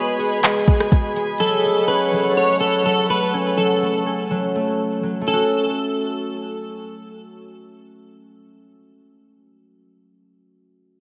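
Heard first together, a dark, slightly broken-up electric guitar melody with analog chorus and ambient delay, a glassy FM pad holding sustained chords with ensemble chorus and sidechain pumping until 3.3 s, and mellow, ringing fingerpicked harp arpeggios open this ethereal, melancholic cloud-rap excerpt at 124 BPM in a half-time feel in F# dorian, while an overdriven R&B drum kit of soft kick, metallic hats, handclaps and rim clicks sits up front only from 0.2 to 1.3 s and a lush hall reverb soaks the dreamy mix over G#m7 moving to F#m.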